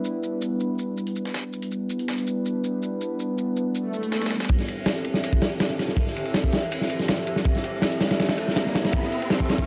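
A crunchy, saturated breakbeat kit of tight kick, medium-tuned snare and dark ride cymbal arrives up front at 4.5 seconds, driving this frenetic, raw drum and bass and jungle excerpt at 162 BPM in A minor. From the start, a warbling, detuned tape-like pad of sawtooth and triangle holds nostalgic sustained chords from Em7 to Am7 through chorus and its own reverb, over a dusty, compressed sampler-style kit of filtered hi-hat, shaker and fat snare. An electronic swell and riser sits in the background from 3.8 seconds into a build-up, and the whole piece carries a gritty hardware sound with vinyl crackle and a moderate echo-chamber reverb.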